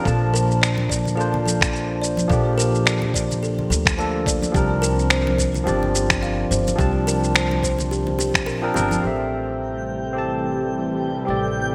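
The rhythm sits at 107 BPM in 4/4 with a lazy 16th-note swing, carried by a gritty, thumpy electronic kick alongside an up-front electronic shaker and finger snaps bathed in gated reverb, while hard-handed congas sit far back in a small room. This is blissful, relaxed sunset chillout, cut from a longer piece and moving from Bbmaj7 to C9sus4 before settling on Am7 at 9.0 seconds. A bright, barky tine electric piano, lightly overdriven and treated with digital delay and shimmer reverb, carries the accompaniment throughout, joined by a buzzing, thumbnail-plucked kalimba spinning arpeggios until about 8.9 seconds. Beneath them, a woody pizzicato upright bass holds the low end. The kick drops out just before the change, and from 9.4 seconds a silky vintage string machine with ensemble chorus swells in on sustained chords, soon topped by a twinkling granular texture with an octave-up sparkle. 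The whole mix has a bright 1980s-style digital sheen and a lush hall reverb.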